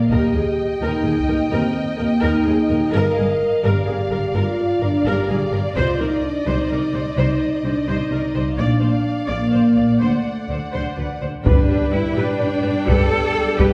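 Heard through the lush wash of a reverberant concert hall, this majestic, triumphant slice of epic orchestral film score rolls along in a stately 12/8 at 85 BPM in Eb major, moving from Eb through Gm7, Cmadd9 and Bb to a D7 that lands on G. A distant, smooth violin section carries the melody over a warm second violin line, while a dark French horn section sustains chords at the fore, and a rich viola section, focused cellos and woody double basses fill out the bowed harmony and bass. Heavy taiko ensemble hits punctuate the opening, the middle and the close, and at 11.5 s a bright trombone section joins in the background as very quiet calf-headed timpani sound briefly.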